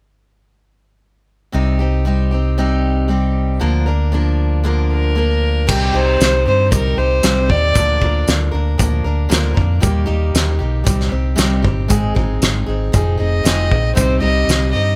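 Picked steel-string acoustic guitar and a round, amped fingered electric bass open this wistful, dusty folk rock and heartland rock passage at 116 BPM in C minor, cut from a longer piece. A dark, woody fiddle with light vibrato and a smooth top carries the melody from 4.9 seconds, and a loose indie drum kit arrives at 5.7 seconds with a punchy kick, fat snare and shadowy cymbals in a pumping studio room. The fiddle, bass and drums sit up front in a dry mix with a faint mains hum, while the harmony moves from C minor through E-flat, A-flat and F minor 7 before settling back on C minor.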